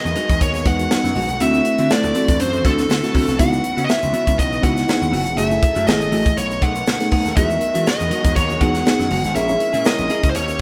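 Polished 1980s jazz-funk pop at 121 BPM with a light sixteenth-note swing, urban and bittersweet in mood, moving through rich chords like Emaj9, C#m11 and B13 in this short excerpt. A dark, high-gain lead guitar carries the melody up front over a punchy, overdriven slap bass, a crisp fusion drum kit with a high-tuned snare, and a dreamy FM electric piano with a soft pad layer and chorus. In the background sit a clean, compressed electric guitar riff, a woody bowed string section with vibrato, and a very quiet grainy tube shaker, all heard as a band playing live in a stone room with a 1.4-second reverb.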